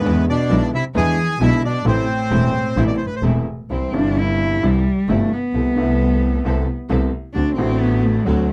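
A reedy, up-front bandoneon carries the melody over an expressive bowed cello, a clear and woody upright piano, a gut-string double bass and a lush string section adding stabs in the background, opening this melancholic, sultry rubato tango at 132 BPM in A minor; the bandoneon drops out at 3.2 s, and from 3.7 s the cello takes a solo with vibrato and portamento as the music moves to C major, all in a dry, close 1970s-style studio sound cut from a longer piece.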